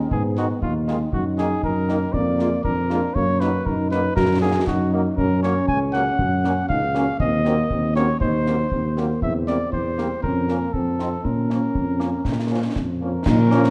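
A mellow cornet leads with a classical-style melody and light vibrato, sitting up front over a punchy, roomy tuba bass in this stern, resolute military-style march for wind band at 119 BPM in 2/4, set in Eb minor before turning to Bb minor at 5.2 s. Behind them, a close-miked euphonium carries a second line, a vintage-toned French horn section fills out the accompaniment, and concert bass drum, snare drum and dark clash cymbals drive the march; a very quiet trombone section adds sustained chords only from 13.3 s. The warm production sits in a moderate scoring-stage reverb, and the passage is cut from a longer piece.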